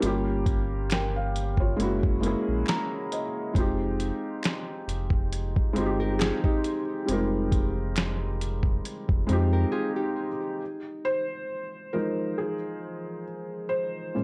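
A felt-muted upright piano, soft and intimate with audible action noise and a cassette-tape tint, sits up front in this nostalgic, hazy lo-fi hip hop excerpt, joined by a deep sine-toned sub bass with octave, a gritty sampler-style drum kit with a thumpy kick and fat snare re-recorded in a large room, and very quiet, close finger snaps. A dark, fingerpicked nylon-string guitar with finger squeak enters at 6.0 s, carrying a second line through tape echo and plate reverb. After a break at 9.7 s, the piano takes a mellow solo from 10.6 s while the guitar lingers until 11.3 s, all within a dusky production with light reverb.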